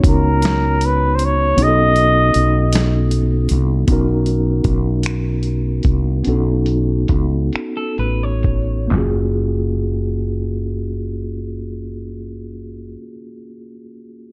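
A breathy, vintage flugelhorn with light vibrato and slapback echo sings a brief jazz-style melody over the first 3.1 seconds of this sensual, slow six-eight R&B excerpt, backed by a mellow tine electric piano, a round, direct fretless bass and a dusty, gritty sampler-style kit with a thumpy kick, finger snaps and handclaps, while a slightly broken-up electric guitar adds a short, warbly second line at 7.8 seconds, in a dark, lightly reverberant production that slows down and sweeps its filter from 3.9 seconds.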